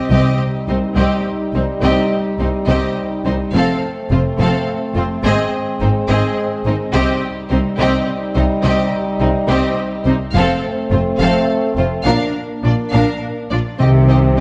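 Dramatic and dark, this cinematic orchestral cue in 6/8 sets a focused, vibrato-laden violin melody over a smooth, distant second violin line, expressive violas, clear French horn chords, intense bowed double basses and lush cellos in the background, with close, dry timpani on medium mallets sounding at the outset and again at 13.8 seconds, when a very quiet, mellow trombone section joins, inside a moderate scoring-stage reverb.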